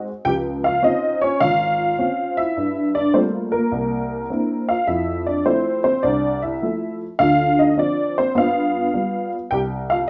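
A detuned, jangly honky-tonk upright piano plays solo jazz with a swinging, late-night feel across these 10 seconds cut from a longer piece, its woody, vintage tone sitting up front amid a wet studio reverb that sounds heard from further back in the room, with a dulled top end.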